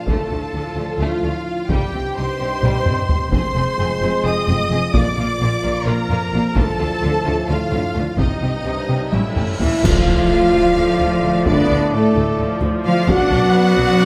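Heavy-stick taiko drums and a full string body open this dark, epic orchestral film-score excerpt, driving in a straight 7/8 at 260 eighth-notes per minute. Two intense, distant violin lines carry the melody and a second line over smooth, even violas, while focused double basses and background cellos anchor the bass and dark, roomy trombones and soft-attack French horns hold sustained chords beneath. The harmony moves through Dm, Cm, Fm and Bb before an A7 pulls the music into D dorian at 9.8 s. Drum fills push toward that arrival, where bright clash cymbals and concert bass drum, which entered at 6.6 s, join a huge, very quiet cymbal swell and impact for a full-band accent. A mellow solo trumpet then adds stabs on a high D as the strings and brass press on under a moderate scoring-stage reverb.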